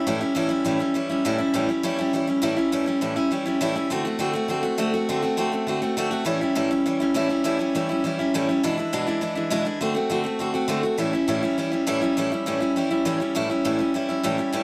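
A bright, full-bodied picked steel-string acoustic guitar opens this rollicking rock passage, playing alone and sitting up front from 0.0 to 14.6 seconds. The tempo is a brisk 203 BPM in a straight 4/4 feel, in A mixolydian with the tuning set to A4 = 442 Hz. Fresh strings give the dreadnought a crisp, lively edge as it spans from E2 up to F#4, suiting the rowdy mood. The harmony moves through A7, D7 and E7 before landing back on A7 at 11.0 seconds, with a new section arriving at 13.3 seconds. Light reverb frames the recording, and the passage is cut from a longer piece.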